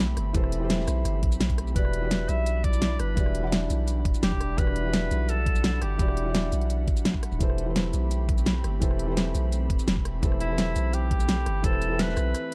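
This dreamy, soulful liquid drum and bass passage, cut from a longer piece, opens with a soft, felt-muted upright piano whose thick felt and audible action noise give it an intimate, dark character, touched with digital delay. Beneath it sits a deep, sine-like 808-style bass with long, decaying notes, while an airy, breathy pad with a detuned, wave-folded edge holds sustained chords in the background, colored by chorus and pumping from sidechain compression. The drums arrive almost at once: a layered, produced pop kit sits up front with a fat snare, crisp hats, rim clicks and shaker, joined by a knocking electronic kick. At 1.8 seconds a clear, vintage-toned alto saxophone enters with a jazz-style solo line through tape echo, falls silent at 6.5 seconds, and returns at 10.4 seconds, over harmony that moves between Am9 and Em7. The production is dark and warm with light reverb, and the kick is the first part to drop away, with the bass following just before the close.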